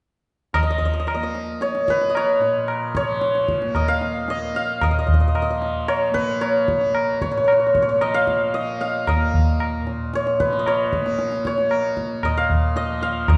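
At a straight 113 BPM in 4/4, this short Hindustani excerpt in raga bhairavi on Bb sets a bright, shimmering, up-front santur melody over a softly plucked, buzzing tanpura drone and high-tuned, compressed, saturated tabla, all three sounding together from 0.5 to 13.4 seconds in a solemn, longing mood within the wet reverb of a recital hall.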